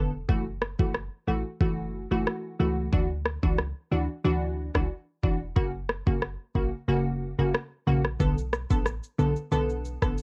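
Dry, lo-fi home cassette sound with lossy artefacts frames this hypnotic, tough dancehall passage, cut from a longer piece, at 91 BPM in F# minor, where an up-front, crisp, detuned wavetable chord stab with tape colour plucks through F#m7, Dadd9, F# and Bm7 over a punchy, tight 808-style sine bass with a noise layer, while an electronic afro-pop kit, also tape-coloured, enters at 0.3 seconds with a knocking kick, rim click and shaker, its kick dropping out from 6.9 to 8.2 seconds.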